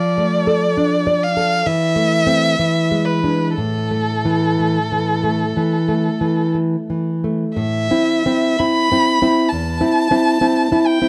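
A romantic duo for violin and classical guitar in A minor, this short excerpt moves with a rubato feel at roughly 56-68 BPM in 4/4, carrying an elegiac, yearning mood. A single rich, focused violin sings the melody with vibrato, sitting up front alongside the nylon-string guitar, whose warm, fingerpicked classical accompaniment lets a finger squeak through. The dry, close 1970s-style studio sound frames the pair as the harmony passes from Dm/F through E7 and settles on A minor at 7.6 seconds.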